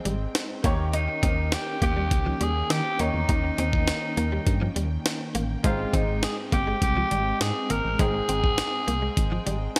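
Bright, digital 1980s-style production with light reverb frames this short, romantic and nostalgic pop passage in Ab major at 102 BPM, moving from Abmaj7 to Eb7 and back. A gritty, pitched-up sampler-style drum kit with a thumpy kick and gated reverb sits up front beside a punchy, round FM bass. A clear baby grand piano with lush chorus and vintage string-machine violas hold the harmony, while a clean, direct-recorded electric guitar riff with ensemble chorus stays in the background; from 0.9 seconds a raspy tenor saxophone carries the solo melody prominently, and the piano adds a brief fill at 9.5 seconds.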